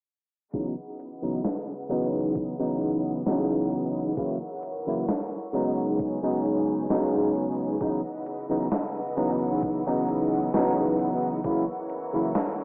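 Vaporwave at a slow 66 BPM in C# dorian, this woozy, melancholic excerpt is cut from a longer piece and drifts through C#m11, F#7 and B69 chords. A barky tine electric piano carries the accompaniment up front, clean and direct, its tone thickened by ensemble chorus and tape echo. Behind it, a bright symphonic string section holds sustained bowed chords with light vibrato, sounding intense yet distant under a low-pass filter that sweeps across the whole passage. A gated 80s digital drum machine supplies hi-hat and a snare drenched in gated reverb, while an electronic kick drum adds a thumpy pulse, both roughened by 12-bit sampler grit. The mix sits in a huge ambient reverb and the haze of a worn cassette, with warbly pitch drift and a small-speaker murk that deepen the woozy blur.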